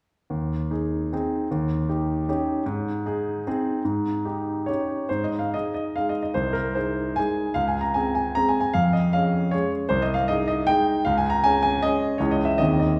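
A clear, intimate grand piano plays alone from 0.3 s to 13.0 s in this proud, rustic romantic classical dance in triple time and Ab major, its dotted rhythms shaped with rubato at 133-166 BPM across a span from C2 to Bb5, with the instrument's action noise audible beneath a wet recital-hall reverb that places the listener further back in the room, as the harmony leans toward Db and turns to Db minor at 12.2 s before this fragment of a longer piece breaks off.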